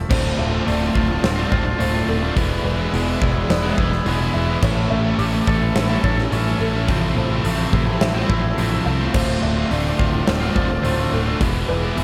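Post-rock in D minor at 106 BPM, this cinematic, cathartic excerpt from a longer piece opens with a very quiet, lush bowed string section, a dark felt-muted upright piano and a twangy clean electric guitar, both arpeggiating through digital delay, over a growly picked electric bass. From 0.1 s a huge arena drum kit with punchy kick and bright cymbals enters together with an overdriven electric guitar riff and a thick fuzz guitar riff set in the background. The parts move through Dm7, E7, A7 and Fmaj7/A in a big arena sound washed in lush hall reverb.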